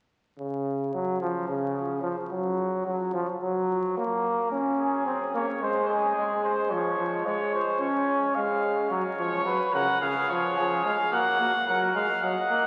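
Stately and lively, this classical imitative canzona for brass in F# major moves at 109 BPM in 4/4, with a bright trombone laying down the accompaniment from 0.4 seconds, a mellow trumpet with light vibrato adding a second line at 4.8 seconds, and a distant, roomy trumpet taking the melody at 9.2 seconds, all heard through a wet cathedral reverb and the crackle of a very old 78 rpm record.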